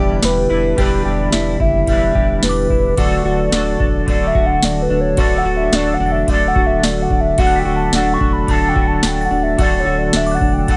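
Ethereal and haunting, this dream pop excerpt moves at 109 BPM in a straight 4/4, with a hollow, woody synth lead carrying the melody over a clean, twangy electric guitar treated with tremolo and analog chorus, a mellow tonewheel organ holding chords through a slow rotary speaker, and a dark, fingered electric guitar tracing arpeggios through lush chorus and digital delay. Underneath, a thick, saturated sub bass anchors the low end while a booming analog drum machine enters at 0.2 s up front with a deep kick, crisp snare, ride cymbal and tambourine, and a crystalline FM bell glints faintly in the background. The harmony shifts from Em7 to D at 3.0 s, all set in light reverb with a soft, rolled-off top end.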